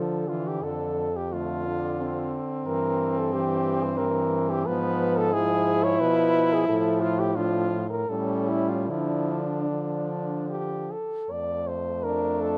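Melancholic and elegiac, this classical passage for horn quartet, cut from a longer piece, moves in a rubato 3/4 at 73-93 BPM in D minor, its harmony passing through dark, rootless chromatic chords to an A7 that settles on D minor at 8.9 seconds. A warm lead French horn with light vibrato sits up front on the melody, joined throughout by a mellow second horn, a third horn filling in the accompaniment, and a low bass horn whose vibrato and smooth top round out the foundation. Close, detailed miking and light reverb give the ensemble an intimate, clear presence.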